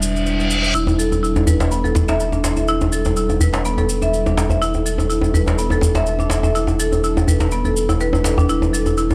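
Spiritual and warm, this 124 BPM afro house excerpt with a light swing rests on an Em7 chord: a reverse cymbal opens over a moody, detuned analog pad colored by chorus, phaser and 12-bit sampler grit, a round, tube-saturated sub bass and a grainy cabasa, before a woody hard-mallet marimba enters at 0.7 seconds with tape-echoed arpeggios and a deep, up-front djembe joins at 0.9 seconds, the whole caught in a dry, gritty hardware recording with light studio reverb.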